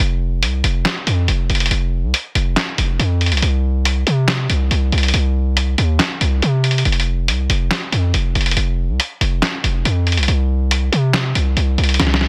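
A hard-hitting 808-style bass dominates this short hip hop and trap cut, its heavy sine tone carrying a noise layer, a fast attack and a decaying tail that sits up front in the mix. The mood is eerie and melancholic, moving at 140 BPM in 4/4 with a half-time feel. A lo-fi sampler-style drum kit of handclaps, hi-hat and a medium-tuned snare plays alongside the bass throughout, sounding compressed and muffled, as if re-recorded in a large room, yet still placed close to the listener. The two parts run together from start to finish across 12.3 seconds, with a drum fill arriving at 12.0 seconds. The overall sound is dry, dense and heavily limited in a modern style, and the passage is cut from a longer piece.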